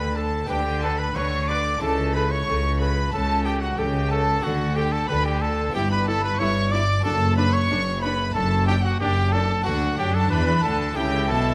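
Classical, baroque-style concerto movement in D major, brilliant and lively, moving at 92 BPM in a straight 4/4 in this short passage cut from a longer piece. An up-front trumpet, bright with light vibrato and classical in style, carries the melody between F#4 and D5. Behind it sit two violin sections high in the range: one lush and focused with a smooth top, the other clear and intense with light vibrato, taking a second line. A rich chamber viola section enters at 0.2 s with accompaniment, while an airy, very quiet harpsichord with a round, plucked tone fills in the harmony. The bass is anchored by an even, smooth cello section and a rich double bass section placed up front. Harmonies pass from Gadd9/D through A/C#, D, Em/G and Bm/D before landing on A at 11.0 s, all set in a moderate recital-hall reverb with a dark production.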